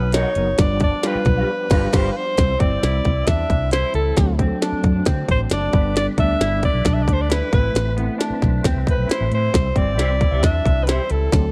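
Uplifting and joyful, this uptempo 1960s-style soul piece in C major moves at 134 BPM in a straight 4/4, with a bright, present alto saxophone carrying the melody up front over a tight, clicky electronic drum kit and a round, punchy, foam-muted fingered bass. Behind them, a barky, gritty electric piano plays accompaniment, a tonewheel organ holds full sustained chords through a slow rotary speaker with chorus vibrato, and a twangy, lo-fi electric guitar plays a riff. A second, darker guitar adds stabs from 0.1 to 2.1 seconds and again from 10.0 to 11.0 seconds. The band hits an accent from 1.5 to 2.4 seconds before the chords settle onto C, and the whole fragment, cut from a longer piece, has a dark production with little reverb.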